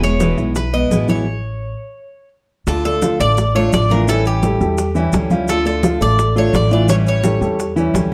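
A woody, thumpy pizzicato upright bass with gut strings sits up front in this danceable, sultry Cuban son and guajira passage, cut from a longer piece, while a bright, metallic Cuban tres with double strings carries the melody through plate reverb. A full-bodied jumbo steel-string guitar with finger squeak picks the accompaniment, and a dark, boxy concert grand with deep bass spins arpeggios, all settling into a Dm to A7 progression after a stop from 1.3 to 2.7 seconds. In the background, tight, high-tuned bongos played with hard hands, ringing congas under soft hands and grainy maracas entering at 0.2 seconds round out a dusky, moderately reverberant studio sound.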